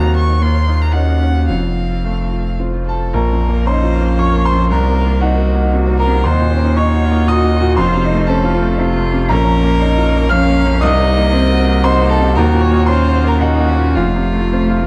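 Neoclassical piano and strings in Bb harmonic minor, fragile and longing, moving in a rubato 3/4 at 107-120 BPM, where a brilliant, up-front concert grand with long sustain carries the accompaniment over a round sine sub bass, while a clear, smooth solo violin sings the melody with vibrato above a rich, distant bowed cello line and a very quiet fingerpicked harp ringing out arpeggios, all in a dark production with light reverb, cycling through Ebm7, F, Bbm and Cm7b5 in this excerpt cut from a longer piece.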